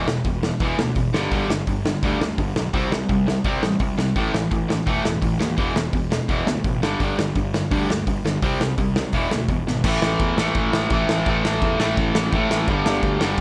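An overdriven, double-tracked semi-hollow guitar opens this raw, aggressive punk rock excerpt in A minor at 169 BPM, cycling a hollow-bodied riff through E5, G5, C5 and A5 while a fuzz-drenched picked bass and a loose acoustic kit with dark cymbals, a punchy kick and a pumping room sound join at 0.1 seconds, before a drum fill at 9.7 seconds kicks off a new section built on A5 and G5, all captured close and dry.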